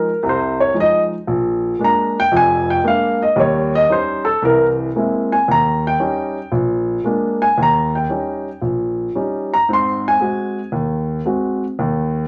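Relaxed and swinging, this short solo jazz passage is cut from a longer piece and carries an easy, unhurried lilt in 4/4 with a loose swing on the eighth notes. A single grand piano carries everything, its warm, up-front tone reaching from deep bass notes in the low register up to bright high notes. The harmony moves through a chain of seventh chords, opening on Fm7 and Bb7 before leaning on Eb7 and passing through a Caug7 along the way. The playing falls into two similar sections, the second starting at 7.6 seconds and heading toward Ab7 before the clip ends at about 12.3 seconds. A short club reverb lends the piano a wet, intimate sense of a small room.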